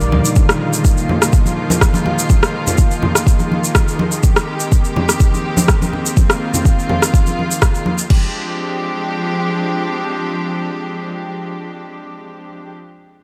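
A driving, lightly swung 124 BPM afro house groove in F dorian sets a deep, tape-warm electronic kick up front with a layered deep house kit of crash cymbal and rim click, ringing congas and a grainy, bright egg shaker in a small room, all dropping out at about 8.2 seconds to leave an earthy, bowed studio string section with light vibrato holding sidechain-pumped chords from Bb7sus4 through Abmaj9 to Fm69 until 12.7 seconds in this cut from a longer piece.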